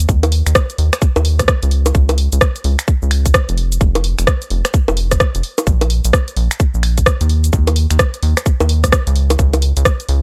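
This dry, gritty recording has little reverb, and its parts sit up front. It is a short excerpt of skippy, bouncy two-step UK garage at 129 BPM in 4/4, with a 63% swing on the sixteenth notes. A rubbery, hollow square-wave bass carries the low end from F1 to Eb2, its dark tone shaped by a plucked filter and a moving notch, with a fast attack and sustained notes. A tight, layered electronic kick drum punches through from 0.1 seconds. Around it, a produced garage kit fills in with bongos, finger snaps, a rim click, a shaker and warm hi-hats, keeping the groove light and springy for the full 10.2 seconds.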